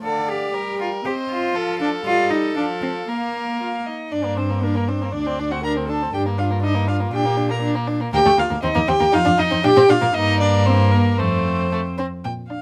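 Dramatic and urgent, this quick classical-period movement for string quartet moves at 119 BPM in a straight 2/4, opening in Bb major before turning to G minor at 4.1 s, with period-style gut-string tone throughout. A dark first violin with light vibrato and a smooth top carries the melody while a nasal second violin with an airy bow adds a close second line. A distant viola with light vibrato supplies accompaniment until 12.0 s, and an up-front, rich cello anchors the bass, all heard through close, detailed microphones with little reverb in this fragment of a longer work.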